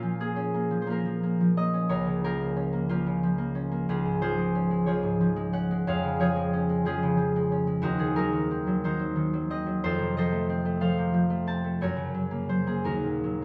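A solo concert harp, mellow and ringing, sits up front in this gentle, mysterious classical excerpt, fingerpicked in 6/8 with a rubato feel across a range from Db2 to Bb5. The harmony drifts from Bbm through Db and F to Gb before arriving at a rootless Cm7b5/Eb near 12.9 seconds. A moderate stone-room reverb lends the acoustic harp a soft halo of space.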